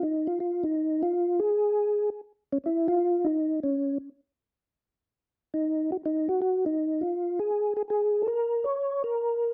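Jazz at a swinging 160 BPM in 4/4, this brief, soulful, late-night fragment is cut from a longer piece and lasts about 9.5 seconds. A percussive tonewheel organ carries the solo throughout, sitting up front and moving within the octave from Db4 to Db5. Its tone is soft, mellow and flute-like, with a clean, percussive attack from second-harmonic percussion. A slow rotary speaker, chorus vibrato and a slapback echo add a shimmering, lightly doubled character to the organ. The dry, close sound recalls a 1970s studio, with only light reverb around the instrument, and the tuning sits slightly sharp at A4 = 441 Hz.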